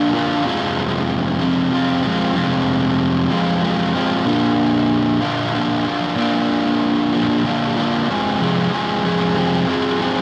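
Rock in a moody, bittersweet F dorian, this short 6/8 excerpt at 63 BPM features a lone fuzz guitar, electric, distorted, picked and double-tracked up front in a dry, close 1970s-style studio sound, moving from Fm to Bb and back to Fm at 8.1 seconds as it shifts into a new section before the cut at 10.2 seconds.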